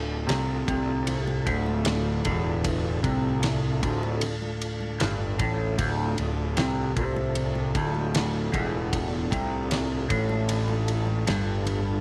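A hypnotic, trippy stretch of psychedelic rock, cut from a longer piece, sits on a single D minor chord in a steady, straight 4/4. A twangy electric guitar, bright and compressed, repeats a low riff through a phaser, double-tracked, while a fuzz-laden fingered bass pushes punchy and up front with overdrive. A damped 70s drum kit comes in at 0.3 seconds with a fat snare, tight kick and ride cymbal, its dry, rolled-off sound keeping things grounded, and very quiet congas with a thin, damped skin join at 0.7 seconds. Far back in the mix, a percussive tonewheel organ holds sustained chords with key click, chorus vibrato and a fast rotary speaker. From 0.9 seconds an ominous, rumbling drone hums beneath it all, dark and detuned with a slow attack, and light reverb lends the studio a gentle sense of space.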